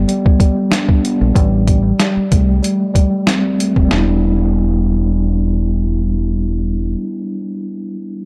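Boom-bap hip-hop at 94 BPM in E minor with a slight swing, reflective and tough, cut from a longer piece: a mellow tine electric piano with analog delay moves from a rootless Em7 to Am7 and back, over a dark, round fingered electric bass and a gritty, pitched-down sampler-style drum kit with a thumpy kick, medium-tuned snare and hi-hat that drops out at 4.1 seconds, all up front in a dry, echo-heavy mix with lossy compression artefacts.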